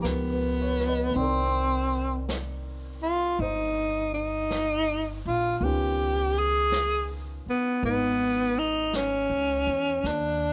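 A slow swung 4/4 at 54 BPM carries this melancholic, intimate jazz ballad excerpt, moving from a Gaug7 opening through Cm9 at 1.2 seconds to Db9 at 5.6 seconds. Up front, a breathy, whispered tenor saxophone sings the solo melody with a soft attack and vibrato. Behind it sit a warm baby grand piano in the background, a woody pizzicato upright bass, and a distant, roomy brushed drum kit with a rolled-off top, all in light reverb, with the piano falling away at 10.1 seconds.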